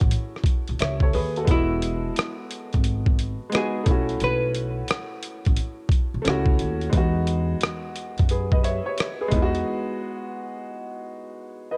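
A dreamy, nostalgic lo-fi hip hop excerpt in E major opens with a smooth, vintage upright piano, a pizzicato steel-string upright bass and a gritty, compressed boom bap drum kit at 88 BPM in 4/4, swung on the sixteenths. The piano sits up front with a low-pass filter softening its accompaniment, while the pitched-down, sampler-style kit pairs a thumpy kick with hi-hat and rim click. At 1.5 s a dark, clean archtop guitar enters with a short picked melody, its hollow-body electric tone dulled by a low-pass filter and trailed by analog delay. The harmony moves between B9sus4 and Emaj7, giving the loop a gently suspended glow. The bass and drums drop away around 9.7 s, leaving the woody piano alone in a brief break. The whole passage carries a cassette-tape character and a sense of studio ambience.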